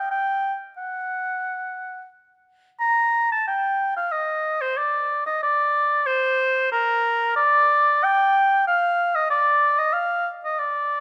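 A lone oboe carries this brief, grave passage, its warm tone touched with a light vibrato and placed up front in the sound. Written as a baroque-style fantasia in classical style, the music has a solemn character, and the solo line moves with a free, rubato feel over an underlying 4/4 metre. The oboe stays within the span from Bb4 to Bb5 and plays alone for the full 11 seconds. A moderate reverb, like that of a scoring stage, lends the instrument a sense of space and a gentle halo around each phrase. The passage is cut from a longer piece.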